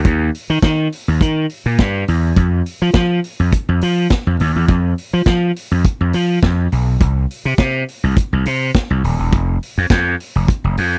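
A straight disco groove drives this glamorous, danceable excerpt, where an overdriven, growly slap bass, bright and punchy from Eb1 to F3, sits up front beside a saturated vintage drum kit with a tight kick, medium-tuned snare, hi-hat and a rolled-off top, all captured dry and close in a 1970s-style studio as the music moves into a new section at 4.7 seconds.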